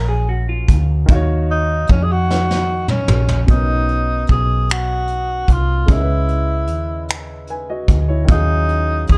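Slow six-eight R&B at 50 BPM with an intimate, warm mood: a brief, clean hollow-body electric guitar line through a phaser ends at 1.1 s over natural grand piano chords and a dark, round, foam-muted fingered bass sitting up front, while a roomy, distant brush kit with finger snaps, hi-hat, tight kick, snare and toms enters at 0.7 s and plays a fill, before a punchy tenor saxophone with light vibrato takes the melody at 1.5 s over rich harmony moving from F#maj7 to D#m11, all in a dry mix with little reverb.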